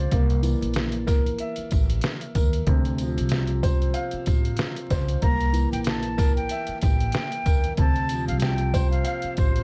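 A dark, mellow upright piano and a woody, growly pizzicato upright bass open this gritty boom-bap hip-hop excerpt, moving between C7 and Dm7 chords over a lightly swung 4/4 groove. A sampler-style trip hop drum kit enters at 0.1 seconds and sits up front: compressed and pitched down, with a thumpy kick, a medium-tuned snare and hi-hat, and a tape-warm grit. A jingly tambourine stays in the background. The piano has a long sustain and is shaped by filtering and plate reverb, while the overall production is dry, shadowy and dusted with vinyl crackle. At 5.2 seconds a breathy, close-miked concert flute takes the melody with a straight tone and soft attack, filtered and trailed by digital delay, carrying the brooding mood to the end.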